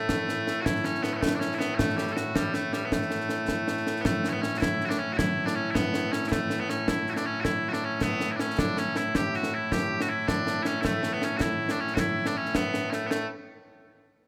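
A rough home-demo mix washed in moderate plate reverb carries this ceremonial, proud excerpt of Scottish pipe music in 6/8 at 106 BPM in A mixolydian, where piercing, up-front bagpipes play the continuous melody over concert snare and bass drums with dark cymbals and a small-room sound.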